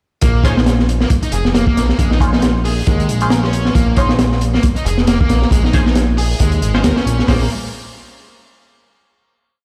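A swaggering, raw breakbeat track in Bb minor at 136 BPM with a swung 16th feel opens at 0.2 seconds with a crunchy, gritty looped breakbeat carrying a punchy kick and high-tuned snare, a fat, detuned, wave-folded analog bass playing a dub-style line up front, and a thick, double-tracked fuzz guitar repeating a 32-step riff through dub echo. From 0.4 seconds, nasal, band-passed chord stabs with ring modulation, phaser, ensemble chorus and 12-bit sampler grit add sparse echoing hits, one shape moved in parallel over a Bbm9 harmony. The drop drives until 7.3 seconds, when a final chord rings out in a stone room reverb, as if played on a big sound system in a bare room.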